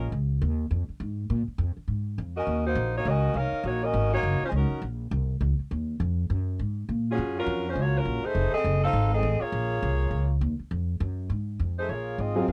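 A pizzicato upright bass with a woody tone underpins this dramatic, sultry big band swing excerpt in Bb minor at a brisk 204 BPM, running the whole way beneath a mellow saxophone section whose light vibrato melody, after a brief touch at the very start, arrives in phrases from 2.4 and 7.1 seconds over dark minor-seventh changes and a tense F7#9, before a smooth vintage concert grand piano sounds only at 12.4 seconds, all captured in a dry, close 1970s-style studio.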